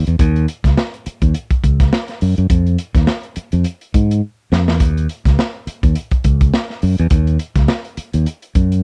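A growly, bright fingered electric bass opens this sly, hypnotic funk excerpt at 104 BPM in 4/4, sitting low and up front, with a crunchy breakbeat kit joining at 0.1 seconds: gritty, saturated hi-hat, tight kick and medium-tuned snare with a rolled-off top and a light swing on the 16ths. A short drum fill at 4.2 seconds breaks the groove before both parts carry on through 8.8 seconds in a dry, close 1970s-style studio sound with little reverb.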